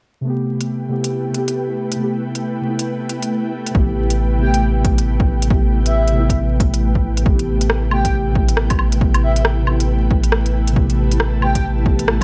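Vinyl crackle and a light reverb frame this wistful, ghostly future garage excerpt, where muted, felt-like synth keys with phaser, chorus, gritty sampler texture and tape echo pump beneath an ethereal, warbling pad from the start. Smooth, up-front hats, rim clicks and woodblock set a swung groove, and at 3.7 seconds a punchy, overdriven kick arrives with a deep, round dub sub bass. From 4.4 seconds a breathy, flute-like lead drifts above with vibrato, analog chorus and cassette-toned echo.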